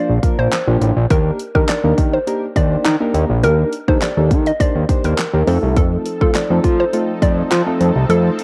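Dance-pop at 103 BPM in 4/4, upbeat and summery, where a hollow, bouncy square-wave pluck carries the melody with chorus, analog delay and cassette-tape coloring over soft, round electric-piano-like synth keys, a fat, nasal detuned analog bass pumping with sidechain up front, and a pop drum kit of punchy kick, fat snare, hi-hat and handclaps, while a lush, warbling unison pad slips into the background at 5.8 seconds as the chords move from Bb through Ebmaj7 to F7, all in light reverb with a home-cassette character in this short cut from a longer piece.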